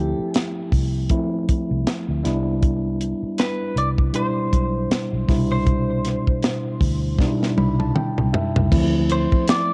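A tight, dry funk drum kit with bright cymbals, a high-tuned snare and a tight kick sets a 79 BPM groove in 4/4 with a gentle sixteenth-note swing, entering at 0.3 s over a dark, round, punchy, foam-muted electric bass that sounds from the start of this lush, romantic 1970s-style soul excerpt in C major. Up front, a mellow, clean tine electric piano with a cassette-tape grain moves from Dm9 to Cmaj7, while a warm, slightly broken-up, compressed electric guitar through a small old amp picks out a melody with tape echo, set in light reverb on a homespun cassette recording. From 7.2 s the drums and electric piano each play a fill, arriving at a Dm7 chord at 8.7 s.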